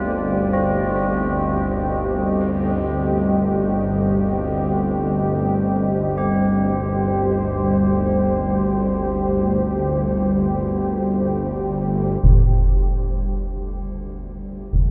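A deep, moody pad of detuned sawtooth and sine layers with a sub octave sits up front in this ominous, cavernous dark ambient drone fragment, holding a sustained Cmadd9/G chord with chorus and slow, lingering swells of sound, while a tense, string-like bowed drone with vibrato and a noisy edge hums low beneath it. Solemn, metallic tubular bells ring out arpeggios through tape echo, and a barely audible bronze singing bowl adds meditative, slowly beating overtones until 12.3 seconds. At 12.2 seconds a close, dry concert bass drum with a low-pass filter enters up front as the harmony settles onto G5, all suspended in a vast, echoing reverb with a very long tail.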